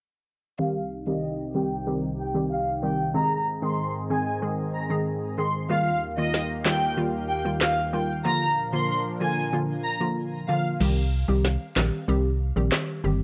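A lush, distant violin section carries the melody over a bouncy, detuned square-wave pluck and a smooth, warbling analog pad from 0.6 s, with a filter sweep running through the Cm–Ab–Ebadd9–Bb progression in this tough, hypnotic C minor dancehall cut at 94 BPM. An electronic, produced drum kit with a woody snare, rim clicks, handclaps and crash cymbal arrives up front at 6.3 s. At 10.8 s a dark, percussive FM bass with an organ-like tone takes over the low end. The whole piece sits in a hazy cassette home-recording sound with light digital reverb.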